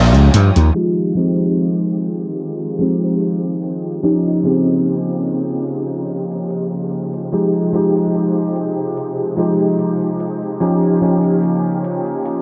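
Hazy and woozy, this slow 73 BPM vaporwave fragment in F minor drifts between Eb9 and Fm9 chords, with a bright, clangy electric grand piano swimming in ensemble chorus and analog delay over lush bowed strings in the background, a punchy slap bass that drops out at 0.7 s, low-pass-filtered electronic hi-hats, and a velvety detuned synth lead that sings in tape echo from 0.8 to 5.6 s, all softened by cassette-tape haze and a concert-hall reverb.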